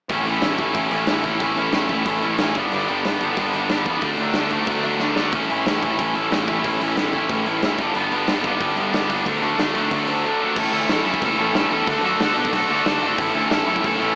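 Energetic and rowdy, this punk rock excerpt, cut from a longer piece, charges ahead at 183 BPM in a straight 4/4, rooted in A mixolydian before settling into A major at 10.6 s. A bright, overdriven electric guitar, picked and double-tracked, sits up front playing the riff across a range from G2 to A4, cycling through A, G and D. Beneath it, a fuzz-laden picked electric bass with a round, overdriven tone carries the low end between F#1 and B2. A big rock drum kit with a punchy kick, a medium-tuned snare, hi-hat and bright crash cymbals drives the groove, marking the turn back to the top of the progression with a fill at 5.0 s. In the closing section the chords shift to a brisker A and D alternation, and the whole thing has a light reverb and the boxy character of a small speaker.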